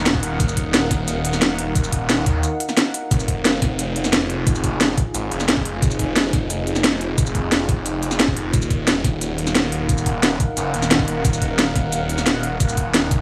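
Set in a light digital ambience with a touch of reverb, this cut from a longer piece is dark, technical drum and bass at 177 BPM in straight 4/4, centred on F Phrygian, with a futuristic, tense mood. A snarling, distorted saw bass sits up front with a growling, detuned unison sawtooth tone, a moving notch, and a bright, compressed edge, pumping against the sidechain in the low register from Eb1 to Eb2. Above it, a deep, moody ambient pad holds sustained chords with a slow attack and long release, its full-bodied sub-octave weight softened by chorus and its own reverb, and it also pumps with the sidechain. The drum kit, layered and placed up front, brings a cracking snare, crisp hats and shaker with a tape-warm colour, while a separate knocking electronic kick, re-recorded in a small room, anchors the low end. The passage plays as a continuous drop, moving from Ebm to Fm7 at 3.1 seconds and back to Ebm at 8.5 seconds.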